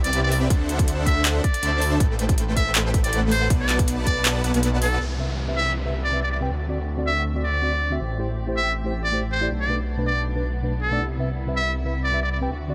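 At 160 BPM in 4/4 with a half-time, lightly swung sixteenth feel, this bittersweet, lush future bass cut opens on a drop, where a layered dubstep kit with overdriven claps and metallic hi-hats and a hard-clipped electronic kick drive the groove. A huge, compressed supersaw riff with a noise layer and vibrato pumps against the beat through cassette-tape colour and a low-pass filter. Underneath, a thick, chorused detuned saw bass holds the low end up front. A brilliant, buzzy trumpet with a metal mute carries the jazz-style melody from the start until 12.4 seconds, with scooped notes and light vibrato set in digital delay. At 5.0 seconds the drums and supersaw fall away as a downlifter sweeps in, and veiled con sordino strings sustain chords under a filter sweep. Moments later, at 5.2 seconds, a mellow tine electric piano takes up the accompaniment over a cycling Cmaj7, D7, Am7 and Bm7 progression. 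Light reverb and digital ambience give the mix a soft sheen.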